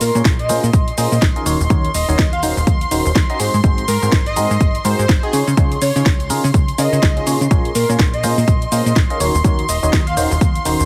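A swung sixteenth-note house groove drives this soulful, bittersweet piano house clip, with a punchy, overdriven electronic kick up front and a layered house kit of cracking snare, bright hi-hats and shaker, also overdriven. A plucky, funky analog bass and a biting FM electric piano riff with phaser and digital delay both pump with sidechain, as does a distant bowed string section holding soft sul tasto chords. Over chords moving from Bbm7 through Ebm7, Ab7 and Dbadd9, an airy, detuned lead carries the melody with chorus, vibrato and delay, while the mix sits in light reverb with a heavily compressed, radio-like sheen.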